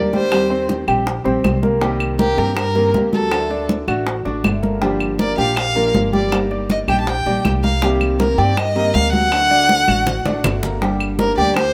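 An expressive, closely recorded bowed violin with vibrato and portamento carries the melody up front in this sultry, warm excerpt of Cuban son and guajira in G minor at 160 BPM, over grand piano arpeggios, a full-bodied fingerpicked nylon-string guitar, plucked upright bass, woody claves, and round low-tuned bongos and damped thick-skinned congas in the background, all in light reverb, with a drum fill from 9.7 to 10.8 seconds.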